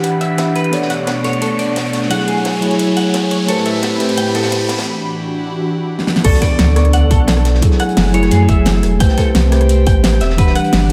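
Straight, rolling 4/4 liquid drum and bass with a melancholic, dreamy feel: a mellow tine electric piano with diffuse delay, an airy, breathy pad with chorus and sidechain pumping, and chorused, picked clean guitar arpeggios drift over a gritty breakbeat kit in the background and an overdriven pop kit with a fat snare and metallic hats, while a riser builds to a brief break and drum fill before the drop at 6.2 s brings in a punchy overdriven kick, an impact and a deep, full sub bass up front, all soaked in plate reverb.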